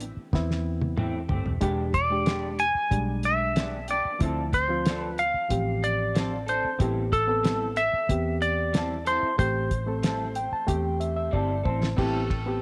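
A straight-eighth soul blues groove in 4/4 at 93 BPM sits on a cloth-damped, thuddy drum kit with a fat snare and dark cymbals, a round, foam-muted fingered electric bass, and a barky, lightly overdriven reed electric piano, all moving through Am7, E7#9 and Dm7 in A minor with a smoky, soulful mood. A twangy, clean lap steel carries the slide melody up front from 1.9 seconds, while a slightly broken-up electric guitar through a small old amp adds compressed stabs with subtle chorus, and the drums and electric piano each play fills near the close. A bright horn section enters with sustained chords at 12.0 seconds just as this cut from a longer piece ends, all set in a light small-room reverb.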